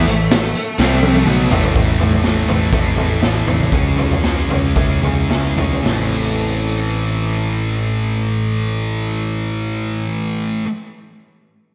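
A straight 4/4 pulse that slows after an early drum fill drives this brooding, angsty quiet-loud alternative rock excerpt: a gritty, punchy garage drum kit in a pumping small room plays until 6.0 seconds beneath a bright, up-front thick fuzz guitar riff with slapback echo and a growling, overdriven picked bass, while a dark octave-fuzz lead guitar melody with slapback echo and digital delay and two very quiet overdriven guitar riffs, one double-tracked, sound only in the opening moments before a lo-fi, slightly broken-up guitar through a small old amp takes up lush-chorused arpeggios in the background from 1.8 seconds, the mix sitting in a lush hall reverb that lends it an arena-sized scale.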